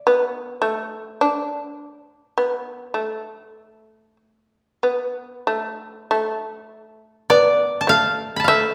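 Austere and meditative, this short excerpt of Japanese chamber music moves in a free, rubato 4/4 around 45-53 BPM in D kumoi, with an up-front koto carrying the woody, fingerpicked melody while a bright, buzzing, plectrum-plucked shamisen joins at 0.1 seconds with a lower, percussive second line, the two set in the generous reverb of a recital hall before the music turns to a new section at 6.1 seconds.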